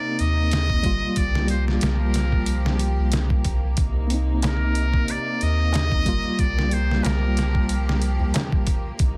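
A buzzy, thin trumpet with a metal mute carries the melody from the start, its vintage, vibrato-laden tone trailed by tape echo until it drops out at 8.0 seconds. This short excerpt of smoky, hypnotic trip hop in 4/4 with a light swing sits on a mellow tine electric piano, heard through its built-in speakers with tremolo and tape echo, and on a bowed string section with a reedy, gut-string, period-style sound holding sustained chords. From 0.2 seconds a gritty, pitched-down sampler-style drum kit with a thumpy kick, a medium-tuned snare and hi-hat sits up front beside a deep, round dub sub bass. A crisp, saturated metal-shell darbuka joins at 4.4 seconds, tucked well behind the other parts. The harmony rocks between Cm7 and Gm7/C, and the dense, heavily limited mix is wrapped in studio reverb.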